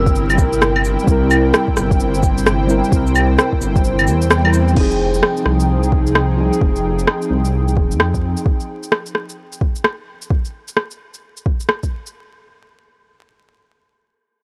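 Muted, felt-like synth keys with chorus and analog delay, an airy, breathy pad and a dark, detuned saw bass that rumbles up front open this melancholic, rainy future garage excerpt together over a C7 chord, all three pumping against the sidechain. A soft, overdriven electronic kick and an organic electronic kit of cabasa, claves, rim click, shaker and crash drive a swung 130 BPM groove in F minor, with the kick dropping out from 3.8 to 4.8 seconds around a band accent before the music settles onto Fm7. The keys, bass and pad drop out in turn, leaving the drums alone until 12.1 seconds, all wrapped in a dry, gritty hardware sound with vinyl crackle and digital ambience.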